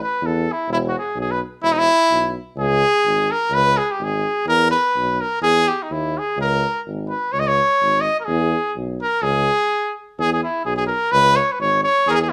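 Balkan folk excerpt at 126 BPM in a swung 2/4, fiery and virtuosic in C# Dorian sharp four, with a clear, up-front cornet carrying the melody in classical style with light vibrato over a warm, distant tuba bass that enters at 0.2 seconds, the band playing live in one room with moderate studio reverb and a full stop at 9.7 seconds before the closing section.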